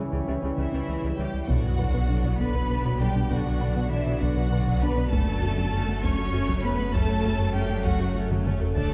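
A dark, hall-reverberant hybrid orchestral and electronic film cue in B minor at 66 BPM in 6/8, brooding and tense, where a deep, moody, chorused ambient pad, a soft nasal pluck arpeggio with delay, a round analog bass riff, a rich cello section, a clear distant viola section and mellow far-off French horns open on C#dim before a rich vibrato violin melody and a smooth second violin line enter at 0.6 seconds, and at 1.5 seconds a sub drop impact, a deep sub bass, a double bass section and a close, dry taiko ensemble arrive with a shift to Bm, later F#m, ending on a drum fill.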